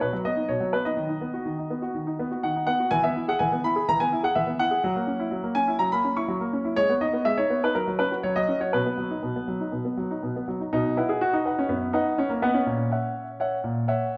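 A playful, elegant classical-period piano sonatina in B major at 124 BPM in a straight 4/4, this brief cut from a longer piece features a solo concert grand, clear and up front with deep bass, an open tone and short sustain, set in a wet recital hall reverb within a dark production, moving through chords such as E, F#7 and G#m before shifting into a new section at 10.7 seconds.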